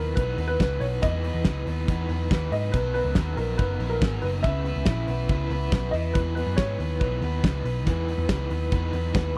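A dry, close 1970s-style studio sound with little reverb frames this breezy, nostalgic fragment of jangly indie pop, moving at 140 BPM in a straight 4/4. A dark, woody upright piano carries the melody between A#4 and E5, its worn, slightly detuned tone and audible action noise carried through tape echo. Beneath it, a twangy electric guitar through a small old amp spins bright, slightly broken-up arpeggios with tremolo and tape echo, while an overdriven, compressed electric guitar fills in the accompaniment. A vintage foam-muted picked bass sits up front with a round, punchy low end, and a big rock drum kit enters at 0.2 seconds with a fat snare, punchy kick and hi-hat. The chords move from Emaj7 to Bmaj7, C#m7 and back to Emaj7 across the roughly nine-second excerpt.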